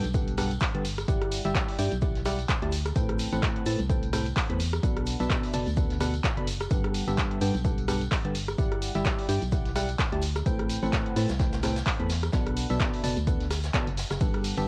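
Piano house at 128 BPM in 4/4 with a light 16th-note swing, joyful and euphoric, this excerpt cut from a longer piece cycles through Gmaj9, Em9/G, Am9 and Bm7 as a biting, full-bodied FM electric piano riff with chorus and sidechain pumping sits up front over a hollow, organ-like FM bass that also pumps. A punchy analog drum machine with handclaps, hi-hat, ride, rim click and tambourine runs from the start, with an electronic kick entering at 0.1 seconds, both re-recorded in a small room, while a natural acoustic kit with hi-hat, shaker and snare stays in the background and a very quiet, distant tambourine with egg shaker and group handclap sits far back. The whole has the intimate grain of a home cassette recording, with tape colouring the piano and drums.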